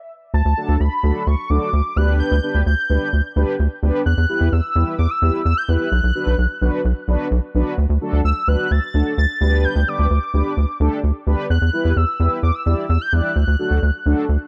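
A straight 4/4 pulse at 129 BPM drives this wistful yet bright synth-pop passage in D major, cut from a longer piece, entering after a brief silence at 0.3 s and cycling through D, G/D, Emadd9 and Bm. A rubbery, hollow square-wave bass with a bouncy filter pluck sits up front and loudest, while a mellow, round, detuned synth brass with chorus, vibrato and a filter sweep fills the middle. High above, a velvety, smooth sawtooth lead with unison detune, chorus and analog delay carries the melody, all within an echo-heavy mix and light reverb.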